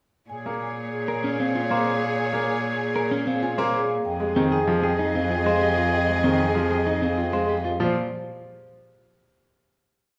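Hypnotic and meditative, this short minimalist classical piece in Bb dorian moves at 192 BPM in a straight 6/4, with a mellow, woody marimba carrying the melody in a repeated short cell over a brilliant grand piano accompaniment. A distant oboe and a lush, bowed string section hold swelling notes, while a smooth, up-front solo cello anchors long bass notes, and a clean, picked electric guitar joins at 1.1 s with compressed arpeggios. The harmony moves from Bbm7 to Fm7 before settling on a final Bb5 chord at 7.8 s, all within the airy bloom of a recital hall's reverb.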